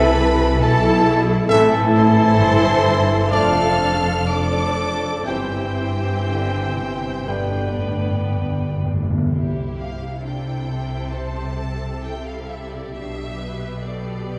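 A full orchestra opens this serene, lyrical classical passage, cut from a longer piece and moving with a flexible, rubato pulse. The melody sits high in a clear, intense violin section with lush vibrato, heard at a distance. Beneath it, a second violin section, smooth and even, and expressive violas with portamento sit in the background over a rich cello section and woody double basses. At the start, an airy metal flute, a punchy cor anglais and a very quiet clarinet add second lines, a mellow, roomy bassoon accompanies, a vintage-toned horn section and trombones hold soft sustained chords, and a trumpet with a smooth top adds stabs. Round timpani on soft mallets step up front with a fill at 7.3 seconds; by 8.9 seconds the winds and brass have fallen away, and once the timpani finish, the strings carry the passage to its close at 14.4 seconds, the harmony moving through A minor and D minor colours toward C and G. 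A wet scoring-stage reverb places the orchestra further back in the room.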